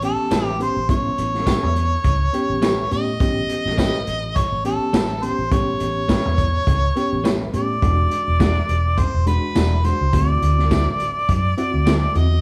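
A clear, overdriven harmonica leads up front with light vibrato and scooped notes, playing a jazz-style solo over a laid-back, rollicking straight-eighth soul blues in A mixolydian at 104 BPM, moving from A9 to E9 at 7.8 seconds and D9 at 10.1 seconds. Beneath it, a reedy, worn electric piano with fast tremolo and light overdrive comps slightly out of tune, a foam-muted fingered bass sits round and dark, and a gritty, saturated breakbeat kit with a punchy kick, snare, hi-hat and tambourine keeps a rolled-off top. A bright, clean, direct-recorded guitar adds compressed picked stabs in the background, all set as a band playing live in one large studio room with moderate reverb, cut from a longer piece.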